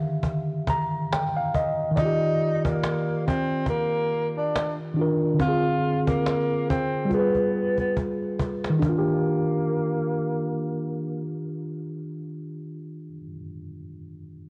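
Mellow and nostalgic, this lo-fi hip hop excerpt drifts along at 70 BPM in 4/4 with a gentle 16th-note swing, set in Eb major and tuned slightly sharp to A4 = 443 Hz. A worn, slightly out-of-tune tine electric piano sits up front as accompaniment from the start, heard as if through built-in speakers, softened by cassette tape and a low-pass filter, and it adds a short fill before the melody arrives. A woody cajon with faint snares carries the beat from 0.1 s, roughened by vintage 12-bit sampler grit, and a drum fill leads into the closing stretch before the cajon stops at 9.0 s. At 2.0 s a breathy tenor saxophone takes the solo in a whispered, intimate jazz style, with subtone, vibrato, soft attacks and scooped notes, passed through a low-pass filter and tape echo, while a filter sweep runs from 2.0 to 8.8 s. The harmony moves from Ebmaj9 through Dm7b5 and G7b9 back to Ebmaj9, all wrapped in a lush hall reverb with the homespun feel of a cassette home recording.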